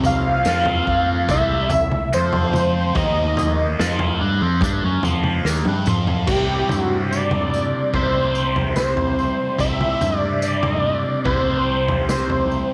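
A straight 4/4 pulse at 72 BPM drives this hypnotic, hazy psychedelic rock excerpt in C major, where a gritty, saturated garage drum kit with a punchy kick plays a fill from 5.4 to 6.3 s into the second section, a round, dark fingered bass holds the low end, an overdriven, double-tracked stack guitar riff with phaser sits up front, a jingly tambourine adds sparkle, and a thick, warbling, detuned unison lead with vibrato and tape echo carries the melody in a small room.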